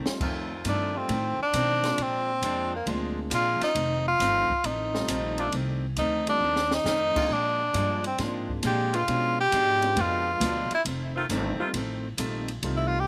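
A drum fill opens this brassy big band swing excerpt, while a bright, boxy picked parlour guitar and a woody, growly pizzicato upright bass start up beneath it. The tune swings at 135 BPM in 4/4 and sits in F mixolydian. From 0.7 seconds, a clear tenor saxophone carries the melody as an up-front jazz solo, with light vibrato, scooped notes and a slapback echo. Behind it, a saxophone section holds sustained chords with vibrato and a smooth top, and a warm, natural grand piano accompanies, its part also touched by slapback echo. The drum kit has dark cymbals, a high-tuned snare and a boomy kick, and it plays a second fill at 6.4 seconds as the harmony moves through F7, Bb7 and Bdim7. The sound is dry and outdoor, with the soloing tenor well forward of the rest of the band.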